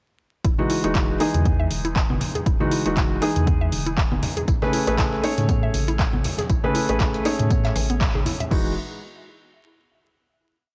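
Deep house with a soulful, sunny swing, built on a punchy four-on-the-floor kick, a drum machine's claps, hats and crash, syncopated low-tuned congas, a deep sine-like sub bass with octave, intimate felt-muted upright piano stabs with audible action noise, and a woody FM pluck arpeggio through chorus and delay, with a gritty, very quiet sampler-style breakbeat joining at 4.5 seconds, a band accent at 8.0 seconds and a final chord ringing out amid vinyl crackle and transformer saturation.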